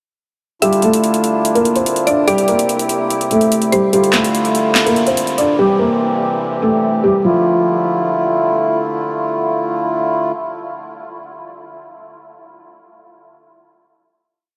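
A felt-muted upright piano leads this brooding, dark trap piece, its soft, intimate tone and short sustain carrying a looping melody doubled in octaves, repeated like a sampled loop and shaded with subtle chorus, a low-pass filter and a diffuse ambient delay. Set at 145 BPM in a half-time feel in D minor, the piece moves through Dmadd9, C and Am7 before coming to rest on a final Dmadd9 chord. Beneath the piano, a mellow accordion holds sustained, reedy chords with a close, round presence, ringing on until 10.3 seconds. A woody, mallet-like FM synth pluck adds a sparse, decaying counter-melody in the background, with chorus and ambient delay, until 3.9 seconds. An overdriven electronic trap kit supplies a bouncy beat of metallic sixteenth-note hats and a sharp snare layered with handclaps, dropping out at 5.5 seconds. The whole dreamy mix is soaked in a huge ambient reverb that leaves the breakdown hanging in a vast, hazy space.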